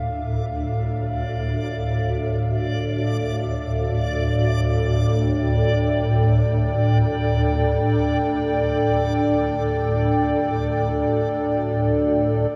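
Unfolding in free time, this dark ambient drone in D minor sits on a single Dm chord and feels dark and cavernous, a fragment cut from a longer piece. A swarming, detuned drone anchors the low end from D2 to A2, its granular, tense body evolving beneath an ensemble chorus and its own reverb, placed up front in the mix. Above it, a deep, moody analog pad holds sustained chords between D4 and G5, its wave-folded, sub-octave tone fading in across the full 12.5 seconds through chorus and shimmer reverb. At 1.2 seconds a reversed, swelling texture enters on a bright, granular D5, quieter than the other parts and also fading in, adding a dreamy glint through shimmer reverb. The whole mix is soaked in a lush hall reverb with a 2.8-second tail, giving the sound a vast, enveloping depth.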